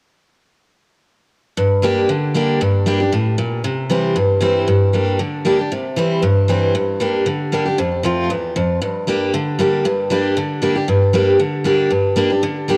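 Bluegrass at a brisk 232 BPM in 4/4, this rustic, driving cut from a longer piece sits in G dorian with a light swing on the eighth notes. A lone picked steel-string acoustic guitar carries everything, entering at 1.6 seconds and playing through to 12.8 seconds, ranging from E2 up to G4. Its dreadnought tone is bright and full-bodied, placed up front in the mix, with a cassette tape character and tape echo. The harmony moves between Gm and C before reaching F and settling back on Gm. A moderate spring reverb gives the home cassette recording a homespun sense of space.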